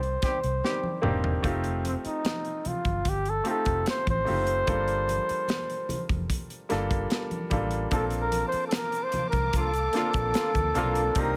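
A straight 4/4 groove at 74 BPM sets up this smooth, cinematic slice of lush 1970s-style soul, cut from a longer piece, with a polished, airy studio drum kit up front, its tight kick and medium-tuned snare joined by hi-hat and toms, and a drum fill from 0.6 to 1.4 seconds. Underneath, a vintage muted fingered electric bass sits dark and round, while bright, hard-handed congas sit in the background and a clear baby grand piano adds intimate accompaniment, its short sustain and audible action noise giving it a natural feel. A breathy flugelhorn carries the melody up front, taking a solo from 1.4 seconds with a soft attack, light vibrato and a whispered, smooth top over chords moving from Cm7 through F7 and Gm7 to Bbmaj7. A tight horn section in octave doubling punctuates with brief pop-style stabs near the start and again near the close. At 7.9 seconds a bowed string section enters in the background with vibrato and expressive portamento, along with a grainy, very quiet tube shaker, all within a small room ambience.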